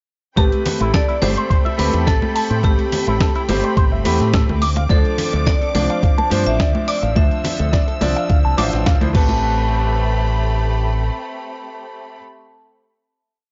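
A thumpy, gritty electronic kick drives this short, groovy nu-disco piece in A minor at 106 BPM, with a round, punchy enveloped fingered bass, a tape-warm sampler-style kit with crash, hi-hat and snare, ringing congas, a twangy chorused guitar riff, clear electric grand piano chords, a lush distant violin pad, and a bright hard-mallet vibraphone hook through analog delay moving from Am9 to Dm9 before a final hit at 9.4 seconds, all on a dry, gritty cassette sound.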